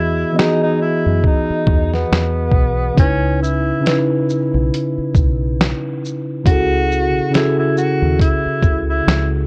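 A breathy, distant tenor saxophone carries the melody in a soft subtone with vibrato and scooped notes, set over a mellow, clean tine electric piano and a dark, round fingered electric bass. This is a reflective, hazy lo-fi hip hop excerpt in C# minor at 69 BPM with a gentle 16th-note swing, moving from Emaj7 to C#m7 to F#m9/C#. A muffled, thumpy sampler-style drum kit with hi-hat, kick, shaker and snare enters at 0.4 s, up front in the mix, and the whole recording is steeped in worn, warbling cassette-tape ambience.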